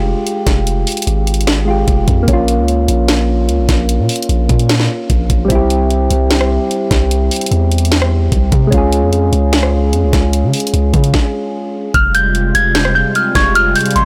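A half-time trap groove sets the pace, with a knocking kick, sharp snare, bright hi-hats and rim clicks from an electronic kit that sounds re-recorded in a small room and sits up front. Beneath it, a deep, sine-toned 808-style bass holds long decaying notes, while soft, round electric-piano-like synth keys, mellowed by chorus and a low-pass filter sweep, carry a melancholic, dark chord progression. After a brief stop at 11.1 seconds, the music shifts at 11.9 seconds: the keys drop out and a smooth, detuned sawtooth analog pad enters with slow-attack sustained chords. A delicate, sweet celesta takes the melody high above, filtered and touched with digital delay, and at 12.7 seconds a glassy, warbling FM synth bell adds a second line with chorus and delay of its own. The dry, blown-out, overdriven mix gives this short cut from a longer hip hop piece a gritty, close sound.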